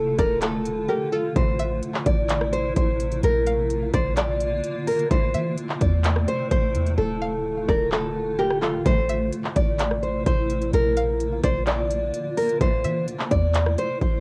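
A half-time trap beat at 128 BPM in A phrygian drives this dark, menacing hip hop excerpt, with hard-clipped kicks, crisp hats, handclaps and rim clicks up front over a deep, boomy sine 808 bass, while a full-bodied fingerpicked nylon-string guitar with audible finger squeak carries the melody through cassette tape and analog delay, a twangy, bright resonator pluck with chorus and phaser adds a second line, a blurred granular cloud pad holds Dm, Am and Bb chords, lush bowed symphonic strings stab briefly in the background at 1.4, 5.1, 8.9 and 12.6 seconds, and the hi-hats drop out from 7.0 to 8.9 seconds in a dry, home-cassette sound.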